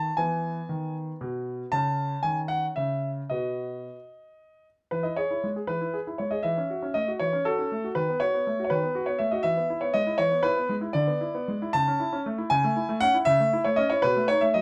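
A 6/8 pulse moves at 78 dotted-quarter beats per minute, played with a flexible rubato that lets the phrases breathe. This cheerful, elegant classical-period sonatina in E major is carried entirely by a solo concert grand piano, tuned to A4 = 442 Hz and spanning B2 to A5. The instrument sounds natural and up front, with a deep bass anchoring its warm tone, all set in a light reverb. An opening phrase moves through E, A over C# and B before a second, longer passage begins at 4.9 seconds, passing through F#m7 over E, B7 over D#, E7 over D and A over C#. The fragment is cut from a longer piece and closes on a B7 chord at 14.0 seconds.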